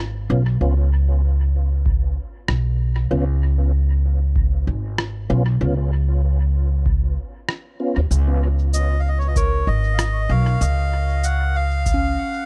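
This short cut from a longer ambient dub piece has a dark, warm sound with little reverb. At 96 BPM in 4/4 with a light swing on the sixteenths, it sits on a single Db7 chord in Db mixolydian, and the mood is spacious and peaceful. A woody, thumpy pizzicato upright bass on gut strings carries the low end up front from the start. At 0.3 seconds a lightly overdriven tonewheel organ adds stabs through a low-pass filter, with chorus vibrato, key click, a slow rotary speaker and dub echo, and it stops at 8.0 seconds. A deep, dry analog kick arrives at 1.9 seconds, joined by a muffled, pitched-down rim click and shaker with dub echo. Near the close a reedy, breathy melodica takes the melody through tape echo, and a soft, pure FM bell plays warbling arpeggios with chorus and tape echo in the background.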